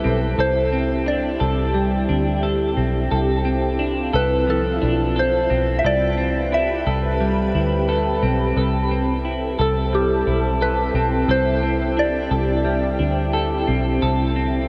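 Soaked in a huge ambient reverb, this ethereal, blissful dream pop excerpt sets a clean semi-hollow electric guitar's arpeggios, colored by analog chorus and diffuse delay, over a shimmering, granular ambient pad of sustained chords, beneath which sits a round, foam-muted electric bass up front, while a pure FM synth bell melody with chorus and phaser stops at 13.0 seconds.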